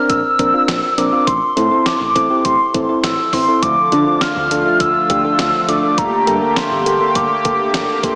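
Soaked in a lush hall reverb with a small-speaker character, this dreamy synth-pop excerpt in D minor moves at a driving 102 BPM with a nocturnal mood, cut from a longer piece. A hollow, woody clarinet-like synth lead with chorus and vibrato carries the melody up front over soft, round electric-piano-like keys with a vintage warble, while a smooth gliding synth bass sits mellow in the background. A clean 12-bit drum machine supplies a thumpy kick, fat snare and hi-hat with a tape-warm, sampler-style feel, and at 3.6 seconds a shimmering, retro pulse-width pad joins with sustained chords over a progression from Bbadd9 and Am to Dm and Gmadd9.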